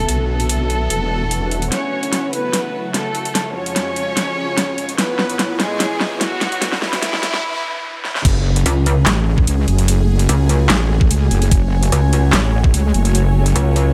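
Lightly reverberant digital ambience and a high-pass filtered sheen frame this menacing, chaotic heavy wobble dubstep fragment in F# minor at 147 BPM, felt in half-time. A dark, expressive violin section with vibrato carries the melody through tape echo while huge, detuned supersaw chords with phaser and a cloudy, evolving granular pad pump in the background, a saturated sawtooth wobble bass growls briefly at the start, and the tape-warm dubstep kit with its huge snare and metallic hats drives a build-up with a drum fill and a very quiet riser and noise sweep. The violins stop at 8.2 seconds as the drop hits, where the chorused wobble bass returns beside a knocking electronic kick and a pulsing pluck wobble bass entering at 8.7 seconds, over chords moving from Bm to F#madd9.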